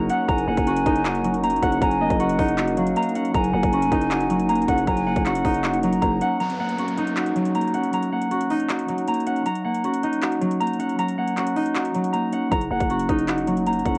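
A light-reverb home recording on cassette gives this half-time trap and hip hop cut a soft, worn haze, moving at 157 BPM in F# major with a triumphant yet wistful mood. A fingerpicked concert harp sits up front with ringing, warm arpeggios through the whole clip, filtered and touched by analog delay, while a dark, clean electric guitar plays compressed, filtered accompaniment beneath it on an F#6 chord. For the first 6.4 seconds an airy, hollow jazz flute adds a tongued, straight-tone second line with its own delay, and a glassy FM pad holds ethereal, chorused chords in the background. A growling, buzzy 808-style bass with a fast, decaying attack drives the opening before dropping out at 6.2 seconds, as an electronic downlifter ushers in a break. The overdriven trap kit carries on with a hard-clipped kick, metallic hi-hats and handclaps, and the bass returns at 12.5 seconds for the close of this excerpt from a longer piece.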